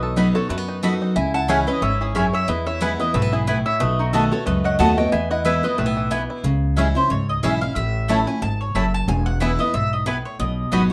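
Lively and virtuosic, this swung bluegrass excerpt sets a twangy, fingerpicked banjo and a woody, double-strung mandolin on melody over a bright, up-front dreadnought guitar with audible finger squeak, a dark, thumpy pizzicato upright bass and a second, round-toned mandolin playing stabs, while a metallic, nasal slide resonator guitar adds a second line until 6.1 seconds, heard within a small room's moderate reverb.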